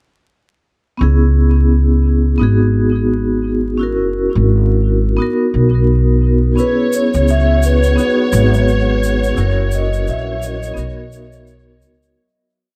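Dark and cinematic, this short trip hop piece opens at 1.0 seconds with a swung groove of woody, pizzicato upright bass and close-voiced held chords on a metallic, medium-mallet vibraphone, carrying tremolo, tape echo and syncopated pushes. At 6.6 seconds a mellow soft-mallet vibraphone enters with a free, airy melody, joined by a lush bowed string section holding one high note, a loose egg shaker with tape echo, and soon a very quiet, breathy wind-like noise texture. The dry, echo-heavy mix is dusted with vinyl crackle and fades out from 8.4 seconds.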